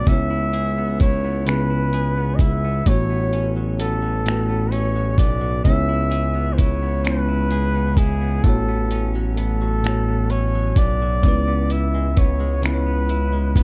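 Dry-sounding, this tender, sensual slow six-eight R&B excerpt at 43 BPM sets a clear, vintage flugelhorn melody with vibrato and delay over a twangy, picked electric guitar second line with delay, a bell-like tine electric piano in the background, a smooth gliding sawtooth synth bass with portamento up front, and a gritty, thumpy dusty soul sampler-style kit of finger snaps, hi-hat and kick, as C#m7 and A69 alternate.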